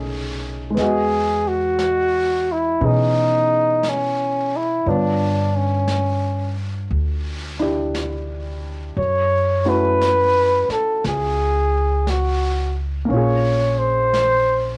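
Melancholic and wistful, this slow jazz ballad excerpt swings gently at 58 BPM, with a breathy, mellow flugelhorn carrying the melody up front, its scooped notes and light vibrato giving it a vintage feel. Upright bass and baby grand piano open together at 0.0 seconds: the pizzicato bass sounds woody and thumpy on gut strings with tube saturation, while the intimate piano, with audible action noise and short sustain, carries a cassette-tape colour. From 0.8 seconds a brushed drum kit enters softly with airy snare and hi-hat, also tape-tinged, as the harmony moves from Emaj7 through G7#11 and F#m9 to A#m9 in a modest reverb that suggests a home recording.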